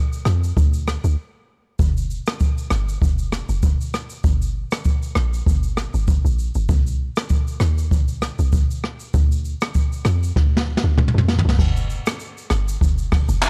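Afrobeats at 98 BPM in 4/4 with a 16th-note swing, this mellow, hypnotic clip from a longer piece sets an up-front acoustic brush kit of dark cymbals, boomy kick, medium-tuned snare, rim click, hi-hat, toms, shaker, handclaps and crash against a deep, round log drum bass whose fast-attack, decaying notes sit between F1 and F2 with an FM tone and a noise layer. A short break arrives at 1.2 seconds, and a drum fill from 10.4 seconds leads into a new section at 11.6 seconds. The sound is dry and gritty, with transformer saturation and cassette tape colour, while the kit keeps a smooth, rolled-off top.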